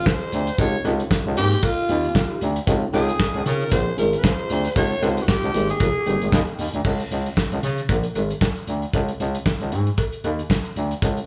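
A raspy, gritty alto saxophone carries the melody up front for the first 6.6 seconds, its scooped notes, vibrato and jazz-style phrasing coloured by a slapback echo. This is smooth, danceable early-eighties boogie funk at 115 BPM in 4/4, with a light swing on the sixteenths, in Ab major and tuned slightly below standard pitch. Beneath the horn, a mellow FM electric piano with a warbling phaser sits in the background, moving through a rootless Bbm9, then Dbmaj9#11 and Abmaj9 chords. A thick, growling FM bass and a dry, damped 70s drum kit with a fat snare, tight kick, hi-hat, handclaps and crash cymbal both sit up front, joined further back by a metallic, band-limited cowbell. Once the saxophone and piano stop near 6.8 seconds, bass, drums and cowbell carry a sparser passage that touches a brief Bb7/Ab before landing on Ab5, framed by a light studio reverb.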